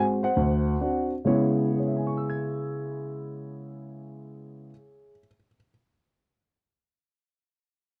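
A dark baby grand piano carries this short solo jazz fragment alone, its tone mellow, smooth and vintage, sitting up front in the mix. The mood is late-night and cool, with a swung eighth-note feel in 4/4. The opening moment slows down over its first 1.3 seconds, passing through a D7 chord before settling onto C#m7 at 1.3 seconds, where a new section begins. The piano covers a broad span of the keyboard, reaching from deep bass notes up into the high treble. The sound is dry and close, like a 1970s studio recording with little reverb, so the instrument feels intimate and near.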